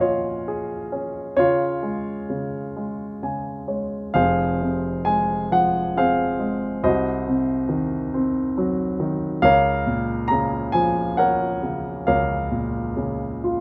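Classical solo piano, calm and tender, unfolding in 6/8 at 43-46 BPM (dotted quarters) with a free, rubato feel. A warm, polished grand piano sits up front in light reverb, its short sustain keeping each line clear across a range from F1 to Bb5. The harmony moves from Db major into Bb minor at 4.1 s, with brief fills leading into that shift and again at 13.4 s in this excerpt from a longer piece.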